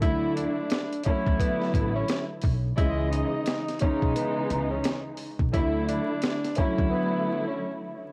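A home cassette recording with vinyl crackle and light reverb frames this moody, tough boom-bap hip-hop excerpt in swung 4/4, where a gritty, compressed sampler-style drum kit with a thumpy kick and high-tuned snare sits up front alongside a lush, bowed string section played sul tasto with vibrato, a woody pizzicato upright bass colored by tube saturation, and a breathy, subtoned tenor saxophone carrying a dark, jazz-style melody over Dadd9 and C#madd9 chords, until the drums and bass drop out at 6.9 s for a brief break of strings and sax.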